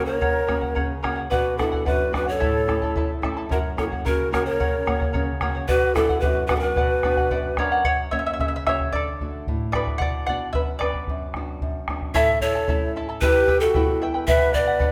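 Breathy, bright cane pan pipes lead up front over a vibrato-laden wooden quena, a shimmering fingerpicked charango and a dark flamenco guitar, with a round bombo joining at 0.2 s, in this wistful, earthy Andean folk excerpt that speeds up throughout in a concert-hall reverb. The winds rest from 7.6 s and the charango takes a solo from 7.9 s, before the pan pipes return at 12.1 s and the quena at 12.2 s.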